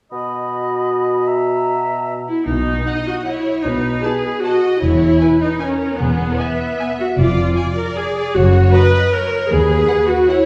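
Heard from further back in a wet recital hall, this sweeping, elegant orchestral ballroom waltz excerpt in 3/4 moves with uneven, rubato beats, opening with a brief woodwind chord of clear oboe, hollow concert flute, mellow clarinet and up-front bassoon before the strings take over at 2.3 s, where a focused viola section carries the accompaniment up front, a distant, expressive cello section and a close double bass section hold the bass, and two rich, smooth-topped violin sections enter at 2.9 s, the melody sitting in the background above a bowed second line.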